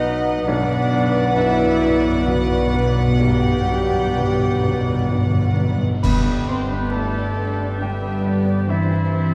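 A slow, rubato 3/4 cinematic film-score excerpt in G major at 66 BPM opens with a full, uplifting orchestra: floating sul tasto violins carry the melody over mellow flutes, a solo cor anglais and a smooth-topped clarinet, a second soft violin line, a clear grand piano and shadowy chamber violas, dark distant French horns sustaining chords, and cellos and double basses anchoring the bass, while hard-mallet timpani on calf heads add a fill from 0.5 s and bright cymbals with a concert bass drum join at 3.2 s before a band accent at 6.0 s, all set in a reverberant scoring stage heard from further back with a faint vinyl crackle.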